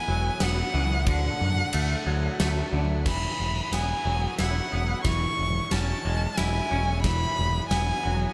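A close, up-front violin opens this euphoric post-rock passage in 3/4, its expressive bowed line carrying vibrato, portamento and analog delay above clean, twangy guitar arpeggios that shimmer with chorus and echo, while an overdriven, round picked bass growls underneath. A huge arena drum kit with a punchy kick, medium-tuned snare, bright cymbals and a pumping hall sound arrives at 0.4 seconds. From 3.1 seconds the music builds with a drum fill in this soaring fragment of a longer piece, set in a small room with light reverb.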